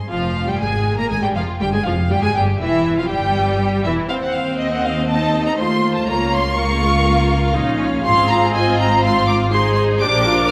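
Cheerful and graceful, this brisk classical-period movement for string orchestra moves at 121 BPM in a straight 4/4, set in F minor and cut from a longer piece. Up front, the first violins carry the melody high in their register with focused, vibrato-rich bowing, while the violas supply a full-bodied accompaniment just as close to the listener. A second violin line fills the middle, and the basses are shared between a cello section heard in the background, singing and expressive with portamento, and a double bass section that anchors the lowest notes. The harmony travels from Fm through Em, F7/Eb, Bbm/Db and Fm/Ab before landing on Bb at 10.0 seconds. A scoring-stage reverb with a 1.9-second tail gives the ensemble a lush, spacious glow.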